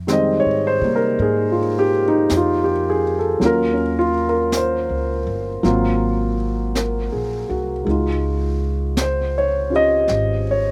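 A woody, growly upright bass opens this short cut from a longer slow jazz ballad in F minor, joined at 0.1 seconds by a dark concert grand piano and a brushed jazz drum kit. The mood is intimate and melancholic, moving at 54 BPM in 4/4 with a gentle swing on the eighth notes. The piano sits up front in the mix as the accompaniment, its mellow, vintage tone carrying deep bass and audible action noise, with a slapback echo behind it. Lower in the balance, the plucked bass with steel strings supports the harmony, while the kit's brushed snare, high-tuned snare and hi-hat sound natural and also carry a slapback echo. The harmony moves through Fm9, Ebm9, Ab13 and Dbadd9, and the overall sound is dry and close, with little reverb and an open-air feel that gives the ensemble a bare, personal quality.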